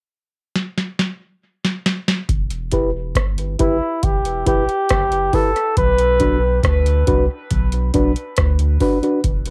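A booming analog drum machine with a deep kick, tonal snare, rim click and metallic hats opens this spacious, heavy dub reggae excerpt in E minor at 69 BPM with a fill from 0.6 seconds, before a round, soft sub bass enters at 2.3 seconds under reedy electric piano stabs and a vintage flugelhorn melody with vibrato, the piano and horn soaked in dub echo and plate reverb over Em and Bm chords, all captured with cassette-tape grit in a home recording.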